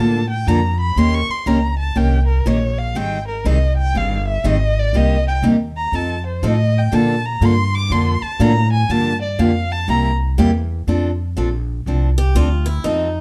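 A swung eighth-note feel in 4/4 drives this charming acoustic string swing piece in the jazz manouche style, cut from a longer performance, with a woody, thumpy pizzicato upright bass on gut strings and a bright, boxy picked steel-string parlour guitar on fresh strings both sitting up front. A bowed violin carries the melody as an expressive solo with vibrato and portamento until 10.1 seconds, the steel-string guitar takes the solo at 10.9 seconds, and a picked swing-style acoustic guitar joins with a second line at 12.2 seconds. Light reverb and a dark, warm production round out the sound.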